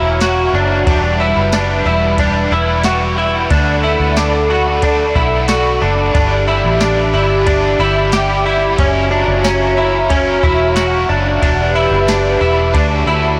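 Floating and blissful, this dream pop passage at 91 BPM drifts over chords such as F#7, Em, D6 and G6, with a twangy, compressed clean electric guitar up front playing chorused, delayed arpeggios, a warbly, detuned tape-like pad holding slow-attack chords, a biting, double-tracked overdriven guitar colored with tremolo and lush chorus, a round, foam-muted bass with tube saturation, and a soft vintage rhythm box with deep kick, crisp snare, ride and tambourine that enters at 0.2 seconds, all bathed in a huge ambient reverb and a blown-out, overdriven recording.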